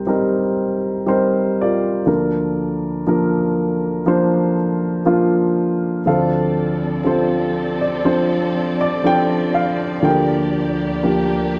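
An acoustic folk-pop ballad at a slow 60 BPM, this melancholic, heartbroken passage opens on a dark, woody upright piano carrying the melody up front with long sustain, moving from Cm7 through Bb/D to Dm7 and Gm7/D. At 6.1 seconds a distant, lush bowed string section enters beneath it with sustained chords, its soft attack and vibrato adding an expressive ensemble glow. Light reverb gives the recording a sense of space.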